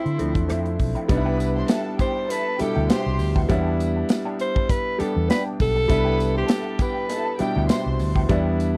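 A lightly swung sixteenth-note groove in 4/4 drives this smooth, lush 1970s-style soul fragment, with a punchy kick, rim click, hi-hat and snare from the drum kit and a dark, round, foam-muted electric bass up front under a clear, deep-toned grand piano, while a warm alto saxophone carries the vibrato-laced melody above soft, floating chamber strings, a lo-fi, slightly broken-up guitar riff with wah and spring reverb sits in the background, a jingly tambourine joins at 1.1 s, and the chords move from Dm9 through Cmaj7 and Em7 in a dry, close studio sound with a faint mains hum.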